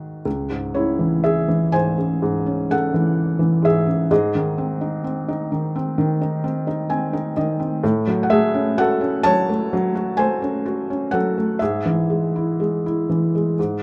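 Wistful and melancholic, this brief classical excerpt for solo felt-muted upright piano unfolds at a rubato 63 BPM in C# harmonic minor, its soft, intimate tone sitting up front with audible action noise and short sustain in a dark production with light reverb, moving from C#m through G# and F#madd9/A to E/G# with a small fill at 6.4 seconds.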